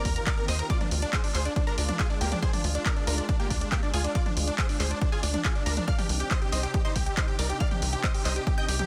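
Uplifting trance at 139 BPM in 4/4, euphoric and emotional, where a huge, detuned supersaw lead carries the melody with 12-bit sampler grit, tape echo and sidechain pumping over a round analog pluck with chorus and digital delay, a silky string-like pad with ensemble chorus and vibrato, a tight, driving sequencer bass, an up-front dry kick, and punchy analog drum-machine claps, hi-hats and toms, moving from Ddim at 0.7 seconds to Cmadd9 at 5.9 seconds under light reverb and a dense, heavily limited master in this short excerpt cut from a longer piece.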